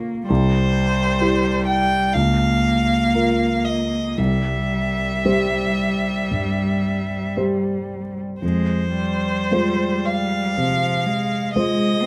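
Classical, a slow romantic movement for piano quartet, elegiac and solemn, moving at 52-66 BPM in 4/4 with a rubato feel. A warm concert grand with deep bass and short sustain sits up front as accompaniment from the start, alongside a clear, focused bowed cello carrying a second line with vibrato, while a rich, smooth violin enters at 0.3 seconds with an even, vibrato-laden melody that sounds both distant and up front. Close, detailed microphones and light reverb frame this fragment of a longer piece, its harmony passing from C through Bbm/Db back to C before settling on Fm at 8.4 seconds.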